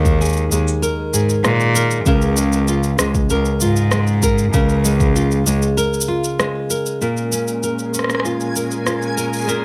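A bright, fingerpicked nylon-string guitar with delay and plate reverb carries arpeggios up front through this intimate, wistful folktronica piece at 97 BPM, over a nasal, sul tasto cello bass with tube saturation that stops at 5.6 seconds, a deep, tape-warm electronic kick, and an electronic shaker and rim click re-recorded in a large room, before a distant, biting string quartet enters at 7.0 seconds on a Bbm7 chord, with both the quartet and the guitar under a filter sweep, and a reversed, detuned, granular swell joins at 7.3 seconds.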